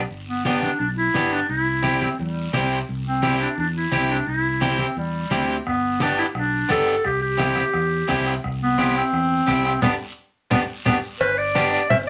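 A warm, soft-attacked clarinet leads this joyful, danceable cumbia, playing a classical-style solo line that sits up front yet carries a roomy, distant air. Beside it, a picked electric guitar at the edge of break-up adds twangy, slightly gritty accompaniment over a harmony that moves between G and C. A fingered electric bass gives a round, amped foundation, while low-tuned congas played with soft hands bring a thick, damped skin tone and a raspy guiro sounds close and dry. A soft-beaten bombo joins in the background at 5.7 s, the band hits an accent at 9.8 s as a drum fill follows, and a ringing metal cowbell enters at 11.2 s as this short cut from a longer piece ends. The moderate studio ambience has a mellow, rolled-off top end.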